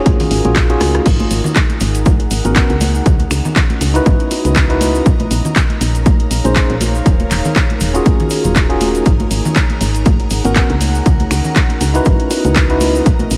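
A swung 120 BPM deep house groove in G# minor rides on a punchy, tape-warm electronic kick up front, while an analog drum machine adds hi-hat, handclaps, finger snaps, rim clicks and crash cymbal, and hard-hand congas and bongos ring close and dry in the background. A drum fill lands at 0.8 seconds, and a grainy cabasa and a shimmering vintage string machine of violins, with ensemble chorus, join at 1.1 seconds. A woody, round FM bass, clean tine electric piano stabs through a combo amp with analog delay, and a breathy, detuned pad with chorus pump to the sidechain over lush minor-eleventh chords, giving this late-night excerpt a dusty feel under light reverb and vinyl crackle.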